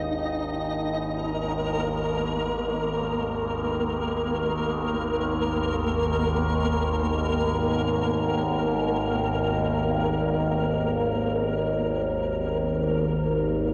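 A detuned sawtooth-and-sine drone fades in from the start, sitting low and up front with resonant, moving overtones, chorus and a slow, sustained swell over a G#5 chord in free time. Alongside it for the whole 13.7 seconds, a flickering, granular triangle texture hovers higher, its grainy shimmer also up front. The result is an ominous, unsettling dark ambient fragment, cut from a longer piece and tuned to A4 = 441 Hz, bathed in a huge reverb and the worn, warbling pitch drift of old cassette tape.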